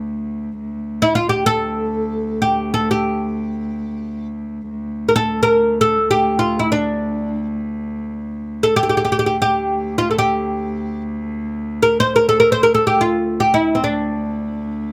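A woody, fretless oud with plectrum-plucked double strings sits up front, playing a soulful, longing melody between C4 and C5 in makam ussak on D from 1.0 seconds, over a single player's bowed sul tasto cello, floating and soft-attacked, that holds a quieter low D2 drone from the start, in free time with light reverb and close, detailed microphones, in this Turkish makam ensemble excerpt tuned to A4 = 439 Hz.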